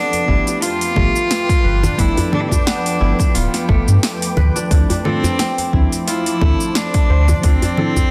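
Hypnotic and warm, this organic downtempo fragment moves at 88 BPM in 4/4 with a light 16th-note swing, cut from a longer piece. An up-front cello carries the melody with a rich, reedy gut-string tone, light vibrato and a touch of digital delay, while a crisp, ringing fingerpicked kora weaves arpeggios alongside it. A dark, detuned chord stab sits in the background with chorus, a cassette-tape colour and sidechain pumping, and a cloudy, evolving granular pad blurs sustained chords into its own reverb. The round sine sub bass enters at 0.3 s alongside an overdriven electronic kick. A layered deep house kit adds a punchy snare, metallic hats, congas and shaker in a small room, with a close, dry djembe rattling in the background. The harmony shifts from G7 to Dm7 at 4.7 s, and the dense, heavily limited master keeps the groove full and steady.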